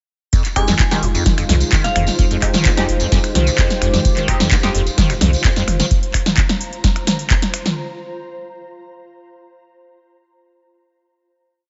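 Light reverb and a digital ambience frame this short acid house piece, a driving, trippy drop in 4/4 with a straight feel. An up-front, tape-warm electronic kick pounds four-on-the-floor, while an overdriven analog drum machine adds a punchy snare, handclaps, finger snaps, metallic hi-hats and a mid tom, with a jingly hand-played tambourine in the background. A squelchy, resonant square-wave acid bass plays a line with accents and slides, a 7-step loop that drifts against the bar, over a round sine sub bass that plays off the beat with tube saturation and sidechain pumping. Sparse, nasal band-passed chord stabs with phaser and digital delay move one shape in parallel, and a crystalline FM bell plays short phrases from 0.6 to 2.0 seconds. A moody, detuned sawtooth pad holds an Fm7 chord in the background, and from 1.6 seconds an ethereal, airy pad with ensemble chorus and built-in reverb drifts through slowly shifting chords.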